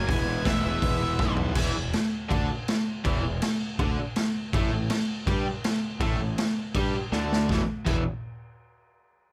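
This short cut from a longer garage rock piece opens at once with a dark, fuzzy octave lead guitar stating a brief melody over a bright, double-tracked overdriven rhythm guitar riff and a fuzz-driven picked electric bass, with the drum kit joining at 0.1 seconds. The lead guitar drops out at 1.3 seconds, just as a drum fill carries the music into a new section where the chords move from E to Dsus2 over E and later to A7sus4. The drums sound like a small room kit played up front, with a punchy kick, a medium-tuned snare, toms, hi-hat and crash, all gritty and saturated with a rolled-off top. A second drum fill at 7.1 seconds leads into a closing stretch on an E5 chord. The mood is raw and rowdy in a straight 4/4, and the dry, close sound keeps the drums and rhythm guitar in your face.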